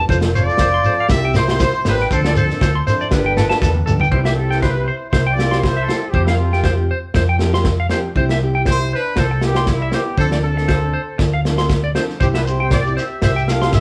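A lightly swung 16th-note groove at 119 BPM in 4/4 drives this warm, danceable highlife guitar band piece in C major, where a gritty, saturated breakbeat kit with a punchy kick sits up front beside a round, dark hollow-body fingered bass, twangy clean electric guitar arpeggios float above a full-bodied fingerpicked nylon-string guitar with audible finger squeak, a tight jazz-style horn section carries the melody with light vibrato, and a grainy shekere plays through the opening, stops as a drum fill ends at 4.1 seconds and returns at 12.2 seconds, the band heard playing live together in one room with wet studio reverb.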